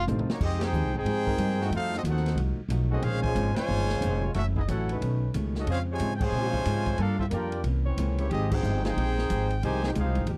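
Dramatic and sultry, this big band swing excerpt in F minor moves at 182 BPM, opening with a drum fill from a punchy, dark-cymbaled kit before a clear, close-miked trumpet section carries the melody up front over a tight trombone section's second line and another trombone section's soft-attack sustained chords in the background, while a woody, growly pizzicato upright bass anchors the low end, a very quiet, clean hollow-body guitar adds accompaniment, and band accents land at 0.6, 3.5, 6.2 and 8.5 seconds in a dry 1970s-style studio sound with small-room ambience.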